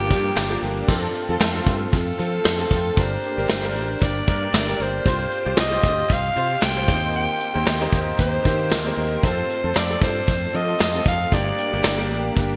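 Moody and urgent, this 1980s-style pop passage with a light swing is led by a raspy, gritty alto saxophone playing an up-front solo melody with scooped phrasing and light vibrato. A clear concert grand piano with ensemble chorus carries the accompaniment over a punchy fingered electric bass, while a very quiet, swirling phased string machine holds sustained chords through the changes from Gm7 to F, Csus4 and Eb6. A vintage brush drum kit with gated reverb and dark cymbals sits forward in the mix, barely audible group handclaps enter at 0.4 seconds, and the brilliant digital production is bathed in a lush hall reverb.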